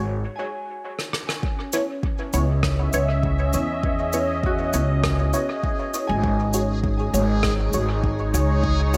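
Lightly reverberant and hazy, this meditative ambient dub fragment floats on a smooth, chorused analog pad, dark muted dub chord stabs with phaser and echo, and a woody, thumpy pizzicato upright bass up front, while a brilliant fingerpicked Celtic harp rings through tape echo in the background; a rim click and cabasa with dub echo arrive at 1.0 seconds, an overdriven deep electronic kick joins at 1.4 seconds, and a reversed, dreamy granular texture swells in at 2.5 seconds as the chords move from G#7sus4 to C#m7 and back.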